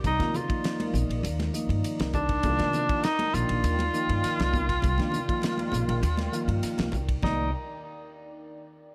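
Slick and intense, this electric jazz fusion excerpt settles on a Cm11 chord, with a breathy tenor saxophone up front carrying the solo melody with vibrato and tape echo. Beneath it, a woody, thumpy pizzicato upright bass and a dry, damped 70s drum kit with a fat snare and tight kick hold the groove, while high-tuned congas ring in the background. A mellow, flute-like tonewheel organ with key click and slow rotary speaker joins the moody sawtooth ambient pad with chorus, all in a light reverb, before a new section arrives at 7.2 seconds.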